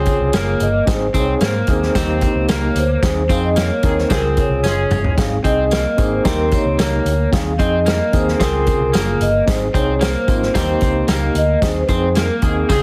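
A mellow, ringing vibraphone carries the melody over a barky, gritty electric piano with fast tremolo, a twangy, slightly broken-up guitar riff, round, dark picked bass, a punchy small-room drum kit and jingly background tambourine in this danceable, uplifting uptempo 1960s-style soul cut at 112 BPM in Ab major, with a tight, distant horn section punching in at 3.8 seconds alongside a band accent and drum fill, all under light studio reverb and a heavily compressed radio sound.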